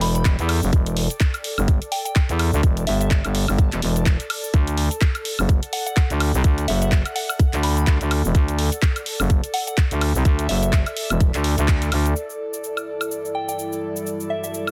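A bouncy, aggressive bass house groove at 126 BPM in 4/4 rides a swung sixteenth-note feel in E minor, with a garage drum kit of cabasa, handclaps, hi-hat and woodblock running throughout and a tight, up-front electronic kick pounding from 0.3 to 11.8 seconds. Underneath, a growling, thick FM bass with a fast attack holds the low end, pumping under sidechain until it drops out at 12.1 seconds. A soft, pure synth bell carries the melody high above, its gentle, decaying tones softened by chorus and a digital delay. An airy, breathy pad with a slow attack and a hint of ring-modulated noise fills the middle, also pumping in time. After a band accent at 11.7 seconds the harmony moves from Em and D to Emadd9, and at 13.2 seconds a deep, moody ambient pad, dark with its own built-in reverb, enters beneath for the closing moments of this dense, heavily limited, fairly dry excerpt.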